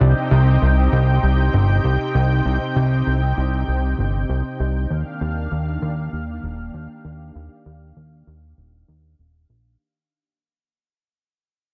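Synthwave in a moody, nostalgic vein, this short cut from a longer piece sets a silky, string-like analog pad, holding sustained chords with ensemble chorus, against a fat, saturated analog bass, both sounding throughout its 9.8 seconds. Each synth carries a filter sweep as the passage fades out, with the harmony moving from Cm to Ebmaj7 at 4.9 seconds. Light reverb surrounds a dense, heavily limited modern master, with both parts placed up front.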